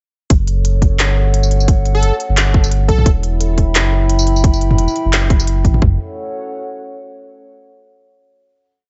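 A dark, tense half-time drum and bass piece at 174 BPM in F# phrygian opens at 0.3 seconds straight into the drop, with a saturated sub bass, two overdriven drum kits and a moody pad arriving together. Up front, the trap kit drives a hard-clipped half-time kick with floor tom, while the second electronic kit adds a sparse, swung beat of crisp closed hats, tambourine, low tom and clap, re-recorded in a large room. Beneath them, the thick triangle-wave sub holds long, deep notes, and the detuned, wave-folded analog pad sustains slowly shifting chords from F#m to Em, breathing with sidechain pumping and chorus. Between 1.9 and 3.1 seconds, a punchy, catchy unison lead offers short bright phrases on a single note, coloured by cassette tape and tape echo. The drums and bass drop out just before 6.0 seconds, leaving the pad to ring out a final F#m chord until 7.2 seconds inside a digital ambience with a muted, rolled-off top end.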